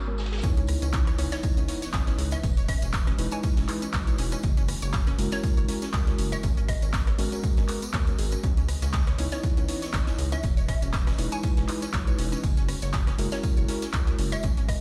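A punchy, overdriven electronic kick and a layered deep house kit of handclaps, hi-hat and rim click drive a swung, late-night deep house groove, with a brushed vintage kit and a jingly tambourine sitting in the background, while a very quiet sub drop marks the impact at 0.4 seconds. A rubbery square bass pumps against the kick beneath a mellow tine electric piano playing delayed stabs, a round analog pluck running chorused, tape-worn arpeggios through dub echo, and a faint, breathy pad holding sustained chords. From 1.3 seconds, a hollow square pluck carries a bouncy melody through its own dub echo, and the whole groove rings out in a big, bare room with a large studio reverb.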